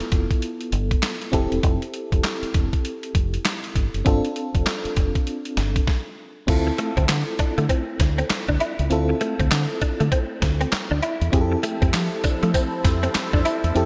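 A 62% swing on the sixteenths gives this 99 BPM, 4/4 groove its bounce, setting a confident, punchy new jack swing mood in a clip cut from a longer R&B piece. Up front, a gritty, compressed sampler-style drum kit, pitched down and treated with gated reverb, pairs a thumpy kick and high-tuned snare with hi-hat, handclaps, tambourine and crash cymbal. A dark, round fingered electric bass sits beneath. A mellow FM electric piano with tremolo carries the chords from G13 through Fmaj9 to G7sus4, and then the band stops briefly at 5.9 seconds. After the break, over Dm9, a bright, clean electric guitar recorded direct with ensemble chorus adds a picked riff from 6.7 seconds, and at 11.3 seconds a swirling, detuned sawtooth pad with phaser and chorus enters on Fmaj7. A lush hall reverb and 1980s-style digital production frame the track.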